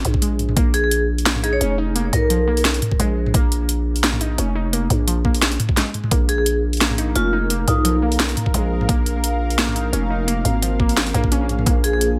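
A growling, buzzy 808-style bass and an overdriven drum kit with a cracking snare and bright hats open this heavy, cinematic half-time drum and bass excerpt, joined by a knocking electronic kick that drops in and out and a lo-fi, warbling pluck that plays arpeggios through chorus, phaser and dub echo. A metallic, ringing vibraphone with fast motor vibrato plays short melodic phrases through tape echo, first at 0.7 s and again after a brief break around 5.8 s. From 6.6 s a deep, moody analog pad adds detuned, sustained chords that pump with sidechain compression, all set in a light reverb.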